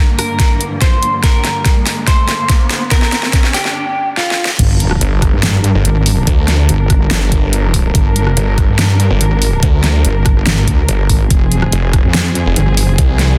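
A half-time 4/4 pulse drives this aggressive, chaotic stretch of heavy wobble dubstep, cut from a longer piece. It opens on a build-up in which a dark, clean, picked electric guitar carries the melody through analog chorus and digital delay, over a muted studio string section holding veiled, con sordino chords with vibrato, low-pass filtered and pumping from sidechain, while a riser and sub drop sit in the background and the drum kit runs fills. After a brief break, the drop lands at 4.6 seconds with an impact: the guitar has stopped, and a saturated, detuned wobble bass with chorus enters up front, joined at 5.0 seconds by a snarling, growling saw bass with unison voices, a moving notch and distortion. A knocking, overdriven electronic kick punches beside the layered kit, whose rim click sits among a huge snare, hi-hat and crash cymbal thinned by high-pass filters. The harmony moves from G minor to F minor at 11.3 seconds, all within a dense, heavily limited modern master bathed in digital ambience.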